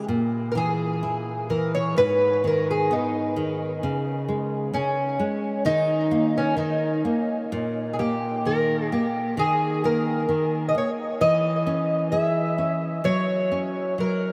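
Fado-style ballad at 65 BPM in a rubato 2/4, passionate and longing, where an up-front nylon-string guitar with a full-bodied, deep classical tone and audible finger squeak fingerpicks the accompaniment under subtle chorus from 0.0 s, joined at 0.5 s by a dark, boxy, shimmering octave-doubled twelve-string acoustic guitar carrying the fingerpicked melody through lush chorus and delay, all steeped in a dreamy, huge ambient reverb as chords drift from A#7(b5) through G#m toward a closing F# in this fragment of a longer piece.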